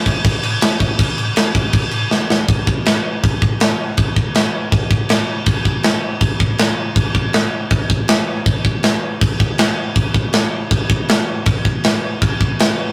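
Energetic and upbeat, this short punk excerpt is driven entirely by a tight metal drum kit at 160 BPM in a straight 4/4 feel. The kit comes in at 0.1 seconds, and after a brief opening passage a drum fill from 2.1 to 2.5 seconds launches the main section, which carries on until the drums stop at 12.7 seconds. Crash cymbal, kick drum and snare drum make up the part, with bright cymbals, a medium-tuned snare and a tight kick sitting up front in a mid-forward, acoustic big-room tone. Light reverb and a rough rehearsal-room character give the recording a raw, immediate feel, warmed by saturation. It plays as a fragment lifted from a longer piece, all punch and forward momentum.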